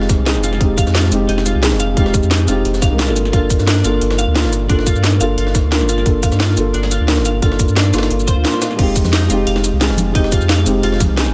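A felt-muted upright piano sits up front in this lush, dreamy stretch of liquid drum and bass, its soft, dark, boxy tone carrying audible action noise and a trail of delay as it comps through Fm9 and Gm9 chords. Beneath it, a round, deep sine sub bass holds sustained notes, while a bright, twangy twelve-string electric guitar picks clean arpeggios washed in analog chorus and dub echo. The drums are layered: a tight electronic kick and a garage kit with a cracking snare, crisp hats, ride, crash and shaker, both tape-warm and re-recorded in a large room. Behind them, a gritty, pitched-up jungle sampler-style kit adds high-passed snare and hi-hats. A very quiet electronic swell appears at 8.3 seconds, and hard-handed, close and dry congas join in the background from 9.0 seconds, all set in a digital ambience in this excerpt from a longer piece.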